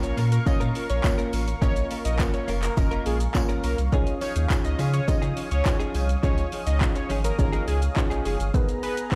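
Upbeat and euphoric, this dance-pop excerpt sets a fat, warbling analog lead with chorus and digital delay over a hollow, bouncy square pluck and a mellow filtered supersaw swell. Both pump with the sidechain alongside a round, up-front sub bass, while a direct-recorded clean electric guitar riff glows through lush chorus and a deep house drum kit with deep kick, handclaps, hi-hat and shaker drives the straight groove. A jingly tambourine sits in the background from 0.2 to 6.1 seconds, and the mix sounds as if played through a big sound system in a bare stone room.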